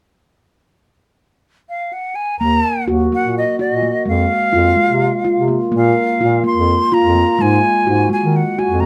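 Pensive yet urgent, this contemporary chamber piece in 7/8 is a fragment of a longer work. The flute enters at 1.7 s with a breathy, tongued jazz melody, expressive and up front with vibrato and rolled-off highs. At 2.4 s, a ringing stainless-steel handpan joins with meditative, soft-fingertip arpeggios in a vintage, band-limited tone, while a distant, roomy bass clarinet supplies a classical-style bass line through Ebm, Fm, Bbsus2 and Ab5, all set in moderate studio reverb.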